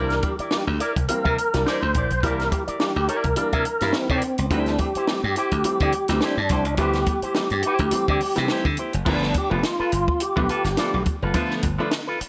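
A swung 16th-note funk groove at 105 BPM in 4/4 drives this energetic excerpt from a longer piece, tuned to A4 = 438 Hz. The compact cocktail drum kit sits dry and up front, with a punchy kick, a high-tuned snare, hi-hat and a dark crash cymbal. The slap bass is bright, amped and just as forward. A fat tonewheel organ carries the melody, lightly overdriven with chorus vibrato, key click, a slow rotary speaker and slapback echo, and drops out at 11.0 seconds. Beneath it, a twangy, clean picked electric guitar runs through an envelope filter, and a woody, slightly detuned upright piano adds intimate stabs with audible action noise and long sustain. The harmony moves from C9 to D9sus4, then shifts to G9 as a new section begins at 9.1 seconds, and the mix carries light reverb.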